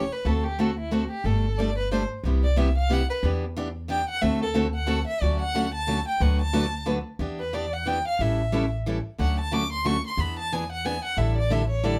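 Swinging and charming, this acoustic jazz manouche piece in 3/4 at 181 BPM features an expressive bowed violin solo, soft in attack with vibrato and portamento, over a picked parlour-toned steel-string acoustic guitar and a woody, thumpy pizzicato upright bass, all three up front in light reverb as the harmony settles into D major at 5.2 s through chords such as Dmaj7, Bm7/D and A7.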